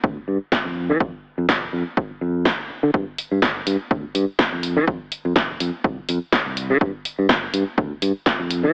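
A fingered electric bass, direct and up front with tube saturation, sidechain pumping and a low-pass filter sweep, opens this feel-good, joyful filtered disco house fragment alongside a layered, tape-warm electronic kick, joined at 0.5 s by an analog drum machine with a punchy snare, pumping hi-hats and a small-room tone, while the whole mix carries light reverb, a swung sixteenth-note feel and an AM radio sound.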